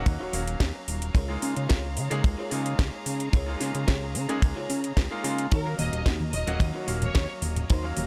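Sensual and sleek, this nu-disco excerpt moves at 110 BPM in a straight 4/4, cut from a longer piece and built over Ebm7 and Db6 chords. A fat, saturated analog bass sits up front with a sawtooth-and-square bite, while a dry, tight kick drum anchors the groove beneath a layered electronic house kit with a cracking snare, metallic hats and ride cymbal. A bright grand piano with audible action noise plays accompaniment through sidechain pumping and digital delay, joined by a rich studio string section holding sustained chords in the background, also pumping. An electric guitar at the edge of break-up picks a compressed riff under analog chorus, tucked behind the mix. At 5.5 seconds a lush symphonic violin section enters with a short melody coloured by vintage 12-bit sampler grit and dub echo, and low-tuned congas join at 5.8 seconds. The sound stays dry, with little reverb.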